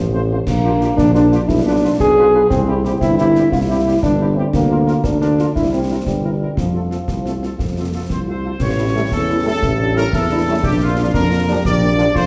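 A punchy, warm tuba opens this proud, spirited military-style wind band march in 6/8, quickly joined by a bright trumpet section on the melody, a very quiet, vintage-toned French horn section in accompaniment, a clear euphonium with light vibrato carrying a second line, and close, dry snare, bass drum and dark clash cymbals, before a smooth-topped, mellow trombone section slips in at 8.9 s with sustained chords in the background, all set back in a reverberant recital hall.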